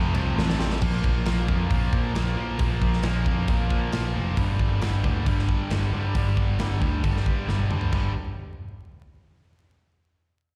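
A straight, driving 4/4 hard rock groove from a tight metal drum kit with bright cymbals and a tight kick rolls through a fill at 0.4 seconds and rounds off with another at 7.5 seconds, while a growly picked electric bass sits up front beneath a bright, double-tracked distorted guitar riff with slapback echo moving from Bb5 to G5, the whole heavy passage heard as a live gig through the venue's PA with recital hall reverb and vinyl crackle.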